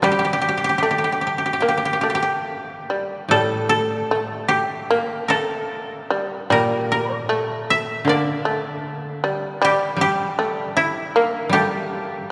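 A koto melody, a shamisen second line and a lower koto accompaniment all sound together from the start of this austere, meditative piece of Japanese chamber music, moving with a free, rubato feel in 4/4. The fingerpicked koto lead sits up front with a dry, woody tone, while the plectrum-plucked fretless shamisen adds a percussive, buzzing edge, and the softer koto below is mellow. A church's long reverb surrounds the trio, and the music shifts into a new section at 3.3 seconds in this short cut from a longer piece.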